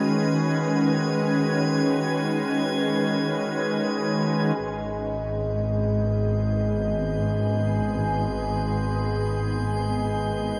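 In free time, this reflective, serene ambient piece in G# minor (shifting to harmonic minor at 4.6 s) floats on a pure, organ-like pad holding sustained chords with ensemble chorus and shimmer reverb, a resonant G#3 drone with evolving overtones, and a high, glassy texture of drifting overtones, both pad and texture fading in from 4.6 s, when a lush, bowed double bass section arrives up front on G#1 with vibrato and a mellow, thumb-plucked harp ripples barely audibly through arpeggios until 8.5 s, the dreamy mix soaked in plate reverb.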